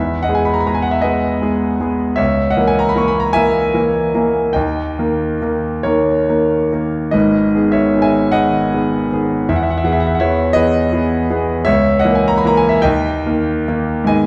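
A clear, intimate concert grand piano carries this melancholic, mournful romantic nocturne on its own, moving in a slow, rubato 4/4 at roughly 46-56 BPM across a range from G#1 to C#6. Its deep bass, long sustain and audible action noise sit in a wet recital hall reverb heard from further back in the room, while the harmony circles through E, A#dim/C# and D# to G#m before returning. This 14.3-second excerpt is cut from a longer piece.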